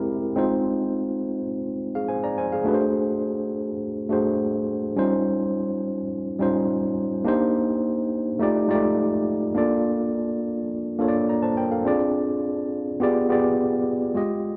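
A rough home-demo sound with light reverb and digital ambience frames this silky, bittersweet soul fragment at 104 BPM in straight 4/4, where a lone tine electric piano, worn, slightly out of tune, lightly overdriven and heard up front through built-in speakers, plays from G3 to Bb5 over lush chords like Fm7, Dbmaj9#11, Cm9 and F13 before arriving at G7b9 as the clip cuts off at 14.6 seconds.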